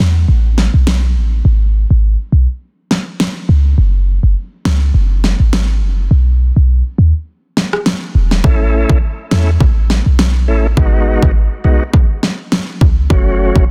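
A swung sixteenth-note dancehall groove in 4/4 sets a tough, sultry mood, with a deep, boomy sine 808-style bass up front from the start and a punchy, overdriven pop drum kit of kick, rim click and fat snare joining at 0.6 seconds. The sparse opening break moves between A5 and F#5 chords and open gaps until 8.4 seconds, when a reedy tonewheel organ with key click and fast rotary shimmer enters over A, G#m7 and F#m. The dry, dense, heavily limited mix keeps this fragment close and hard-hitting.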